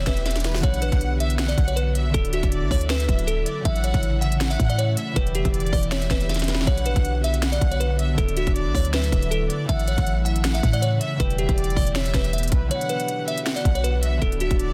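A dense, heavily limited, dry mix carries this melancholic, hard-hitting half-time trap cut in B minor at 159 BPM, where a delicate, tinkling FM synth bell with chorus and tape echo leads over a lush bowed violin section, a fingerpicked, ringing concert harp, an ethereal detuned pad in the background, a deep, boomy 808-style bass, and an up-front trap kit with hard-clipped kick, sharp snare, crisp hats and finger snaps, the kit entering at 0.1 seconds, filling at 6.3 seconds and dropping its kick at 12.7 seconds as chords cycle through Em, Bm, Dadd9 and A.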